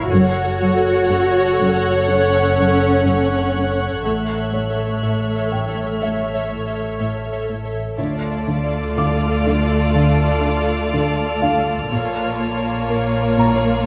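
This cinematic suspense cue moves at a slow, straight pulse in 4/4, with a mysterious, eerie mood throughout this short cut from a longer piece. Con sordino strings carry the whole passage: a veiled violin section plays a second line, violas supply close, soft-edged accompaniment, and cellos and double basses hold the bass, while a second cello section plays a riff from 0.1 seconds. A high studio violin section adds a dark, veiled texture above, and a felt-muted upright piano sits intimately in the background. A pulsing, tempo-synced pad of detuned triangle tones sustains chords with chorus and its own reverb, its long release blurring the edges. The harmony moves from F#m to A, then at 8.0 seconds the music shifts into D minor as a muted violin melody enters, closing on Bbm at 11.9 seconds. A moderate recital hall reverb gives the dark, vibrato-laden ensemble a sense of space.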